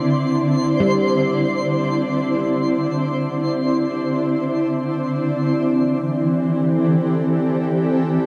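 A weightless, serene ambient passage in free time and C major opens with a cloudy, detuned granular pad holding up-front sustained chords from Cadd9 to Am7 at 5.4 seconds, while a ringing handpan plays meditative arpeggios in the background until 3.8 seconds and a twinkling, sparkling granular texture shimmers until 5.4 seconds, all bathed in a huge reverb within a dark, warm production.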